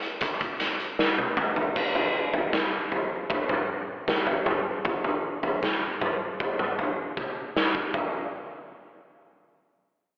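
A raw, acoustic garage drum kit opens this 78 BPM straight-feel rock passage in 4/4. Kick, snare, hi-hat, toms and crash sit up front with a gritty, saturated character, a punchy kick and a rolled-off top, and the kit sounds like it was recorded in a bright stone room. Fills at 1.0 and 7.2 seconds frame the bittersweet, cathartic mood before the drums stop at 8.1 seconds, all heard through a light reverb and a telephone-like filtered sound.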